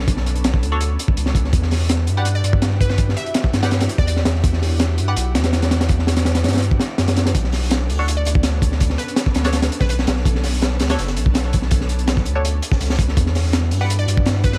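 A crunchy, gritty breakbeat kit with a high-tuned snare and tight kick drives this frenetic, nostalgic drum and bass excerpt at 165 BPM in B minor, sitting up front beside a thick, saturated sub bass, while a muted dub chord stab with phaser and dub echo, a glassy wavetable pluck melody entering at 2.4 seconds, an ethereal airy pad in the background, a second very quiet breakbeat layer of hi-hat and snare from 7.4 seconds, and vinyl crackle move over Bm9 and Em9 chords.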